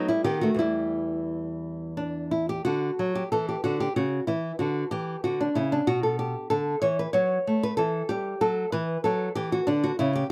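In a flexible, rubato three-beat metre, this short excerpt from a longer piece is a baroque-style classical dance with an introspective, grave mood. A solo nylon-string guitar, fingerpicked and acoustic, sits up front and ranges from a deep E2 up to C#5, moving from B7 and Em to D-centred harmonies coloured by added-eleventh chords. The close, detailed miking catches the instrument's small, warm body, framed by light reverb, and the opening phrase repeats at 2.7 seconds before the passage ends at 10.3 seconds.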